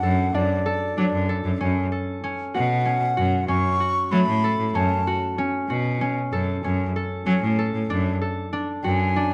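A dark, warm production with light reverb frames this pensive yet urgent fragment of contemporary chamber music in 5/4, where an airy, wooden baroque flute carries the melody with vibrato and an unsteady tongued tone, a ringing, fingerpicked concert harp spins up-front arpeggios, and a single bowed cello plays a biting, intense bass line with vibrato over harmony moving between D/F# and F# minor.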